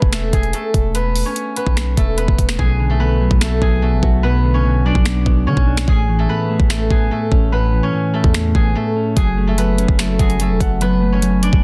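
A silvery steel-string zither carries the melody in this melancholic, brooding trap excerpt, its bright fingerpicked notes ringing through a low-pass filter and a tape echo. Beneath it, a punchy, heavy 808-style bass with a sine body, a noise layer, a fast attack and decaying notes anchors the half-time groove. An up-front electronic kit supplies a knocking kick, finger snaps and a sharp snare with soft clipping. A dark, clean electric guitar, fingered and softened by a low-pass filter and spring reverb, joins at 2.6 seconds as the harmony moves from E through Bm and Aadd9 to F#m. The hi-hats are muted from 2.6 seconds and return at 9.2, after a brief break that begins at 8.8. The track sits in digital ambience with a dense, heavily limited modern master, and it is cut from a longer piece.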